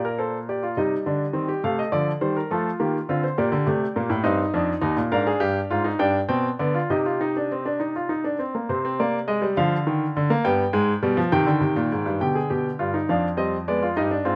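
Lively and joyful, this short passage from a longer baroque-style classical piece is a four-part fugue in a straight 6/8, played solo on a baby grand piano. The piano sounds clear, polished and up front, caught by close, detailed microphones with light reverb, and its voices range from Eb2 up to G5. After an opening statement, a contrasting middle passage arrives at 8.7 seconds before the opening material returns at 12.2 seconds.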